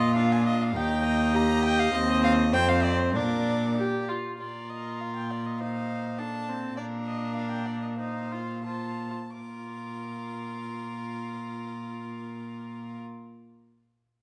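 In a supple, rubato 2/4 at 82-103 BPM, easing down between 6.2 and 9.4 seconds, this spirited, cheerful fragment of a quick classical-period string quartet movement in Bb major passes through three short sections. The first violin carries the melody up to D6 with an airy, nasal bow, over the second violin's inner line; a distant viola with light vibrato fills in the accompaniment, and an up-front cello anchors the bass, all four played on gut strings in period style with a reedy edge. The two violins sound close, and the quartet rings in a wet recital-hall reverb.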